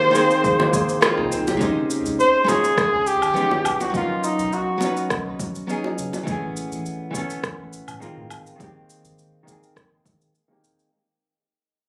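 Recorded on a phone in the room with club reverb, a moderate plate reverb and compression, this sunny, relaxed sunset chillout cut from a longer piece moves at 103 BPM in 4/4. A clear, up-front flugelhorn sings a pop-style melody with vibrato and delay until 5.1 seconds, while a concert harp rings out fingerpicked arpeggios and a dark, clean hollow-body archtop guitar with delay and a low-pass filter plays major-ninth chords, a filter sweep on it running through the fade-out from 1.6 seconds. Underneath sit a deep sine sub bass, a punchy electronic kick, a layered electronic shaker, rim click and woodblock up front, and round, low-tuned bongos in the background.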